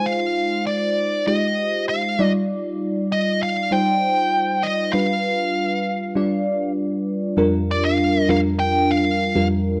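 A nasal, overdriven lead guitar with a parked wah carries the melody from the opening, with slapback echo, over a bell-like, sparkling FM electric piano whose mellow chords are coloured by phaser and lush chorus. This is slick, urban pop at 98 BPM in a straight 4/4. The harmony moves through Fm7, Ebmaj9/G and G7 before a new section arrives at 7.4 seconds, all in a dry, close 1970s-style studio sound that places both parts up front in this brief cut from a longer piece.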